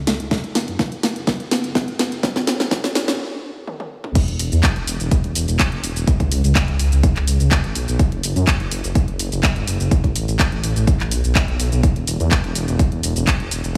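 A dark, detuned sawtooth bass rumbles up front through this progressive house passage, its deep, beating tone pumping with sidechain compression. The track moves at 125 BPM in a straight 4/4, tuned to A4 = 437 Hz, and carries a hopeful, expansive mood. A punchy, tape-warm electronic kick sits forward beside a layered pop drum kit of crash cymbal, handclaps, hi-hat, shaker, fat snare and toms, with both drum parts set in studio reverb. The opening build-up rides on drum fills and breaks into a stop at 3.2 seconds before the drop lands at 4.2 seconds and carries on to the end. The mix has a light, digital ambience shaped by a high-pass filter, and the passage is cut from a longer piece.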